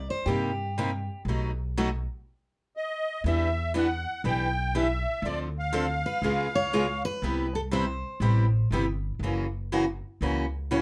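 A swung eighth-note feel in 4/4 drives this excerpt of acoustic string swing in the jazz manouche style, with a swinging, virtuosic mood. An upright bass with gut strings sits up front, its pizzicato tone woody and thumpy, while a boxy, bright picked steel-string guitar carries the accompaniment. A second picked steel-string guitar, a full-bodied dreadnought with audible finger squeak, adds a high second line briefly at the opening and again from 6.1 seconds. After a short stop in the band ending at 3.2 seconds, the musette accordion, having entered at 2.8 seconds, carries the melody up front, reedy and shimmering yet dark and smooth. A moderate small-room reverb lends the ensemble an intimate feel as the harmony moves through seventh and ninth chords.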